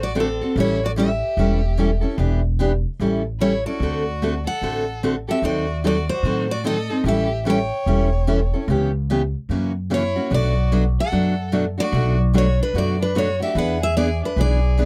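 A dry, close, 1970s-style studio sound frames this charming, swinging fragment of acoustic string swing in A mixolydian at 148 BPM, where a full-bodied picked dreadnought guitar carries the melody, a clear, focused bowed violin with vibrato adds a second line, a bright, fresh-stringed picked guitar sits up front on accompaniment from 0.1 seconds, and a woody, dark, thumpy pizzicato upright bass on gut strings anchors a chord progression that moves from D7 and A7 through D#dim7 and F#7 to Bm7 and E7.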